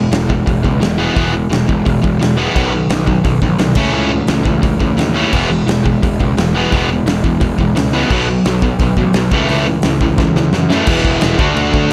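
The recording has a light reverb and an up-front mix, with a big-room drum kit and a bright, compressed distorted electric guitar pushed to the front. This rowdy, energetic punk rock excerpt runs at 173 BPM in a straight 4/4 in E major, with two guitars playing riffs from the start: the bright distorted guitar, and a sludgy overdriven guitar pitched lower with a warmer tone. A picked electric bass growls underneath with fuzz and overdrive. The drums come in at 0.1 seconds with crash cymbal, hi-hat, a fat snare and a punchy kick, their tone dark and smooth. The chords move from E through B and A/C# back to E, then B5 and A/C#, and a drum fill at 10.2 seconds leads into a brief new section at 10.9 seconds that shifts from E to D before the clip cuts off.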